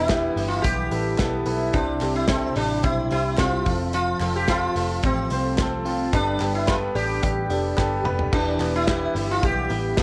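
The sitar's buzzing, shimmering melody leads this breezy, bright indie pop excerpt at 109 BPM, sitting up front with a slapback echo over a straight 4/4 pulse. Underneath, a woody upright piano with long sustain supplies accompaniment, while a clean, direct-recorded electric guitar plays compressed arpeggios colored by phaser and slapback echo. A vintage muted picked bass holds the low end with a round, foam-muted, punchy tone. At 0.1 s a loose indie drum kit enters with dark cymbals and a punchy kick, joined by a very quiet group handclap that sounds crisp and saturated. The chords move from Em through C, F and Gadd9 before returning to Em at 8.3 s, just after a drum fill, all in a light reverb.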